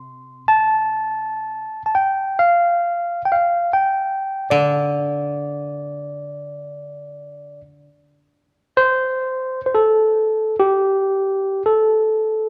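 An overdriven, gritty tine electric piano carries a high melody through a combo amp, over a bright, woody koto played with fingerpicks low in its range, both up front in this austere, calm fragment of Japanese chamber music in free time, tuned to A4 = 436 Hz, with the koto falling away at 7.9 seconds as the music slows from 6.6 seconds, all set in a moderate recital-hall reverb.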